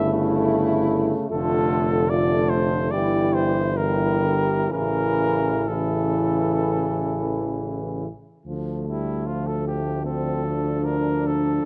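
A warm flugelhorn carries the melody up front, its vibrato giving a singing classical line to this solemn, melancholic, hymn-like passage for brass band, cut from a longer piece. Beneath it, a mellow French horn section holds a smooth-topped second line with light vibrato. A clear euphonium and a trombone supply the accompaniment from a more distant, roomy place, with the trombone sitting in the background. The tuba anchors the bass with light vibrato, and it is also placed up front. The rubato phrasing in 4/4 lets the harmony move unhurriedly through shifting chords before the music turns to a new section at 8.5 s, while light reverb and close, detailed microphones keep each voice distinct to the end at 11.7 s.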